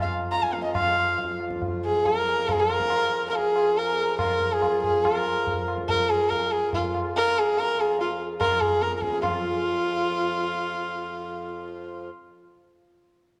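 Moderate concert hall reverb surrounds this introspective, solemn excerpt of Hindustani classical music in 5/4, starting at 142 BPM and gradually speeding up. Up front and intimate, a single bowed sarangi carries the melody with light vibrato, soft attacks, gliding portamento, sympathetic strings and a smooth top, while a reedy, breathing hand-pumped harmonium holds a mellow drone beneath it. Low-tuned, ringing tabla sounds distant in the large room, entering at 0.3 s and dropping out at 9.4 s, just after the music moves into a new section at 9.2 s.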